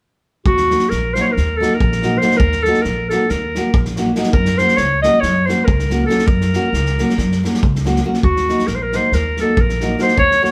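Balkan wedding-band folk in 9/8, fiery yet bittersweet, with a bright, vintage clarinet out front carrying a classical-style solo melody over a woody, thumpy pizzicato upright bass and a loose, punchy drum kit whose saturated, gritty kick and snare sit mid-forward with a rolled-off top. A small, fingerpicked nylon-string guitar with fresh strings joins at 0.7 s, accompanying through a move from Eb minor to Gb and back to Eb minor at 8.2 s. The band sounds live in one room under a wet studio reverb, and the passage is cut from a longer piece.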